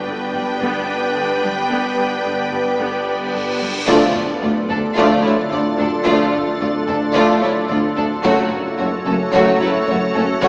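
This tense, vast cinematic cue blends orchestra and electronics in a passage cut from a longer piece. It opens on an up-front, calm organ-like drone holding sustained chords with ensemble chorus and built-in reverb, joined by a focused, rich violin section on a second line and a distant viola section in the background. Beneath them sit a very quiet, expressive cello section and a thick, saturated detuned saw bass with chorus, at 110 BPM in 4/4 over a G chord. At 3.0 seconds a huge cymbal swell leads into an impact, and at 3.9 seconds the harmony turns to D minor as a second, smooth violin section takes the melody with lush vibrato, moving later to F sharp minor. Bright, tight trombones and a soft-attacked, dark French horn section add sustained chords, while a very quiet double bass section and a roomy tuba fill the low end, and a taiko ensemble struck with heavy sticks sounds close and dry in the background. 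The whole recording is heard from further back on a scoring stage with wet reverb and a small-speaker character.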